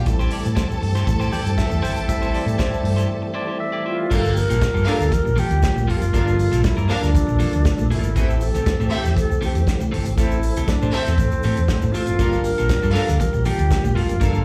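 A straight, driving 4/4 disco groove carries this danceable cut from a longer piece, anchored by a dark, round hollow-body bass sitting up front and a distant, roomy soul kit with a tight kick, medium-tuned snare, hi-hat and dark crash. Bright, high-tuned congas struck with hard hands play very quietly, and a grainy egg shaker sits in the background. The tine electric piano takes a clean solo over the opening Am7 through 4.1 seconds, with a break near its end, then returns at 12.2 seconds. Around 3.9 seconds an airy, close-miked alto flute enters with the melody, its tongued notes carrying an unsteady vibrato and a slapback echo. Beneath it, a lush, focused string section plays a bowed second line, a mellow tonewheel organ holds sustained chords with key click and a fast rotary speaker, and a slightly broken-up, compressed electric guitar picks out accompaniment as the harmony alternates between Am7 and Gm9. 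The whole performance has the feel of a live gig heard through a venue's PA, wrapped in light club reverb.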